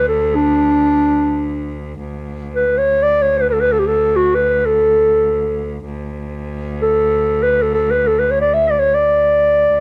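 A mellow clarinet leads this festive, stately makam ensemble fragment, playing a classical-style solo melody up front with a touch of cassette-tape colour, over a single bowed cello holding a low drone. The cello sits lower in the mix, its tone bright and biting with an intense vibrato. Light reverb and small-room ambience give the home cassette recording an intimate feel across its 9.8 seconds, cut from a longer piece.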